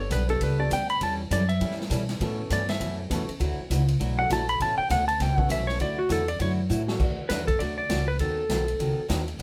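A clean, compressed lap steel guitar sits up front and carries the melody as a slide solo with volume swells, ringing out until about 9.1 seconds in this brief cut from a longer western swing tune in D major. The feel is swinging and down-home at a brisk 200 BPM in 4/4, with a lilting swing on the eighth notes. Beneath it, a thumpy upright bass with gut strings is plucked in a woody low register, while a bright, full-bodied jumbo acoustic guitar is picked on fresh strings. A dark, mellow vintage upright piano adds soft accompaniment before dropping out at 7.0 seconds, as the harmony moves from Gadd9 and A7 through Dadd9 and Aadd9 to a plain D and a closing B7. The big-band drum kit swings on ride, hi-hat, crash, a medium-tuned snare and a punchy kick, tossing in a fill at 6.7 seconds, and the whole band sounds like it is playing live together in a natural studio room with a moderate ambience.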